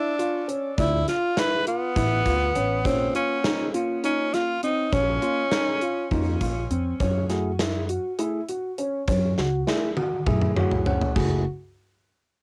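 This home recording on cassette has a light reverb around it, and the sound is a short cut from a longer progressive instrumental piece in a driving, brooding 7/8. A bright tenor saxophone carries the melody up front, close-miked with a pop-style vibrato and a tape echo trailing its lines, until it drops out at 6.4 seconds. Beneath it, a dark grand piano plays mellow, boxy arpeggios with a cassette-tape coloring, while a clean, direct tine electric piano with a bell-like ring adds accompaniment. An upright bass, plucked with a warm, woody, steel-strung tone, anchors the low end. The gated 80s drum kit sits up front with a polished, airy stone-room sound, bright cymbals, a medium-tuned snare and a tight kick, breaking into a fill at 9.4 seconds, and the electric piano adds its own fill at 10.3 seconds as the harmony moves from minor chords into an F#m7 section.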